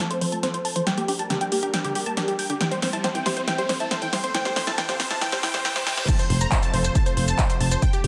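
A punchy, up-front mix in a moderate digital room carries this soaring, uplifting trance passage at 138 BPM in F major, cut from a longer piece, where a detuned supersaw stab leads the melody with cassette-tape grit and delay over a thick, warbling pad and a tight, wave-folded arpeggio sequence, all three pumping against the sidechain. Analog drum-machine claps, hi-hats, shaker, snare and crash drive a build-up with a drum fill and filter sweeps on the supersaw and arpeggio, while a very quiet riser and reverse cymbal rise in from 2.1 seconds. At 6.1 seconds the drop lands on F as an analog kick re-recorded in a large room enters, and a round, mellow FM bass joins moments later.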